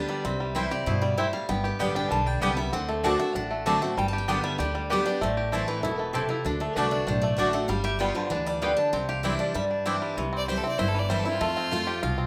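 A bright, up-front steel-string acoustic guitar carries the melody on fresh strings in this joyful, lively bluegrass passage cut from a longer piece, playing until 9.6 seconds. Beneath it, a second full-bodied picked dreadnought guitar picks out the accompaniment while a twangy, percussive banjo played with fingerpicks rolls out arpeggios near the front of the mix. A dark, thumpy upright bass with gut strings plucks the low end, and a picked mandolin with its double strings adds stabs from 0.6 seconds. The straight feel moves through C, G, D7, Am and a closing Cadd9 before shifting to C and F for the final stretch. At 10.4 seconds a clear, biting fiddle takes a close, intense solo line with light vibrato and an airy bow, all set in a large studio with moderate reverb.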